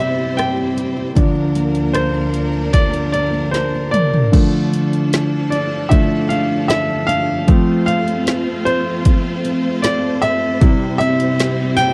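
Pop ballad, melancholic and heartbroken, in a straight 4/4 with a slightly flat tuning, cut from a longer piece, where a clear, polished baby grand piano sits up front and carries solo lines throughout over bowed, vibrato-rich string chords. A bright fingerpicked steel-string guitar plays arpeggios with slapback echo in the background, while an electronic drum kit with a punchy kick, a woody snare and dark hats enters at 0.4 seconds and plays a fill from 3.5 to 4.3 seconds as the harmony moves to Dmadd9. The dry, close sound recalls a 1970s studio.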